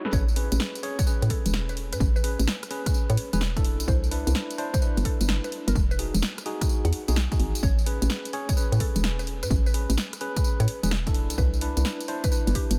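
Clean tine electric piano stabs through analog delay open alongside a dry analog drum machine's filtered hi-hat, rim click, snare and tambourine in this sunny, soulful two-step UK garage excerpt swinging at 128 BPM, where a punchy electronic kick and a hollow, bouncy FM bass pumping up front drive a drop over Amaj9, Cmaj9 and Emaj9 chords while a woody, mellow mallet-like synth pluck melody with chorus and delay sits in the background.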